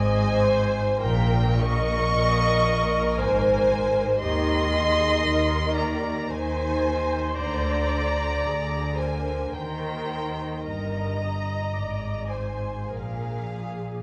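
A wet recital-hall reverb with a 1.5-second decay gives this dark, warm production an enveloping glow. It is a slow romantic movement for string orchestra in triple metre, lyrical and serene, its uneven beats loosened by rubato. Every section plays con sordino for the full 14 seconds: the veiled violins carry the melody above a second violin line, while the violas, heard close, fill in the accompaniment with vibrato. Beneath them the cellos sound distant, and the lush double basses stand up front, anchoring the bass with soft-attack bowing. The harmony moves from Ab through Bbmadd11 and Bb/D to Eb, then comes to rest on Bb5 as this passage of a longer piece breaks off.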